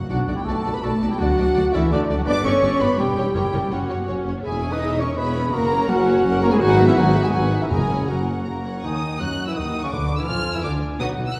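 A warm French horn section holds sustained chords in this urgent, dramatic romantic orchestral passage, cut from a longer piece and moving at a fast 166 BPM in 3/4 with a rubato feel. Over it, the violin section carries a lush, expressive melody with vibrato and portamento, while a second violin line with a soft attack and a smooth top adds its own strand. Mellow cor anglais, clear clarinet and a pure, hollow flute with lifted highs weave second lines, the clarinet and flute sitting in the background. Focused violas fill in accompaniment, while dark, woody cellos, vibrato-rich double basses and a distant, roomy tuba anchor the bass. The harmony begins in B minor and turns to B major from 4.4 seconds; round, very quiet timpani on soft mallets mark a few moments, and a present bassoon joins the accompaniment at 8.8 seconds as a new section begins. A scoring-stage reverb places the orchestra further back in the room.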